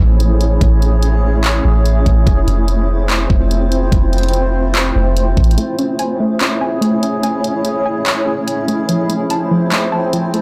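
A blurred, evolving granular cloud pad sustains Amaj7 and Fmaj7 chords with sidechain pumping throughout this blissful, dreamy cloud-rap hip hop excerpt in a half-time feel. A deep, round 808-style bass and a smooth R&B drum kit with a knocking kick, warm hats and handclaps carry the groove until 5.6 seconds, when the bass drops out, the kick falls silent and a soft, gentle pluck enters with dark arpeggios through chorus, a low-pass filter and tape echo. The recording is blown-out and overdriven, with light reverb.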